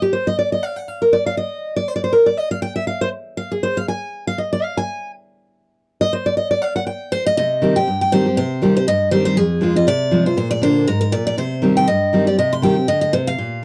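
Rustic, driving minor-key bluegrass with a light swing, in which a bright, up-front picked steel-string dreadnought accompaniment guitar, with audible finger squeak, plays alone at first before a full-bodied second picked dreadnought joins with the high melody at 7.1 seconds, both set in a dry, close 1970s-style studio sound with light reverb as the fragment moves from its opening into a Cm, Fm and Bb progression.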